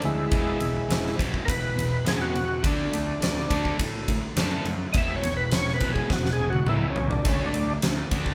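A short classic rock passage in E mixolydian, driving and sunny at 104 BPM in a straight 4/4, opens with the full band playing together in one room under light reverb. Up front, an overdriven tonewheel organ takes the solo melody, its gritty, percussive tone marked by key click, second harmonic percussion, chorus vibrato and a slow rotary speaker. Behind it, two distorted guitars play the riff, one bright and the other dark and sludgy, while a fuzz-toned picked bass sits low with an overdriven, warm edge. A huge arena drum kit drives from the front with a punchy kick, fat snare and bright ride cymbal, rolling through a drum fill from 6.1 to 7.3 seconds. Very quiet beneath it all, a lush vintage string machine holds sustained chords with a phaser and ensemble chorus as the harmony moves between E and D.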